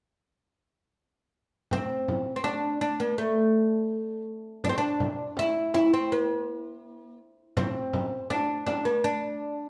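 A live-in-one-room recording bathed in a large studio reverb opens this soulful, longing Arabic maqam ensemble excerpt, where a bright, woody, fretless oud with doubled strings carries the plectrum-plucked melody up front from 1.7 to 9.7 seconds, alongside a small frame drum struck with hard hands that enters with it, sits further back and stops at 8.8 seconds.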